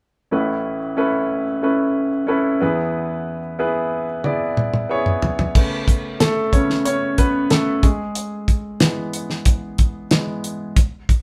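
Moderate studio ambience frames this warm, anthemic piano-driven pop excerpt in 4/4 with a straight feel, where a clear, polished baby grand piano up front moves between Aadd9 and E from 0.3 seconds. A dry, damped 70s drum kit with a fat snare, tight kick, hi-hat, toms and crash cymbal enters with a fill at 4.2 seconds, and the piano takes a solo from 5.5 seconds as the two play together in one room.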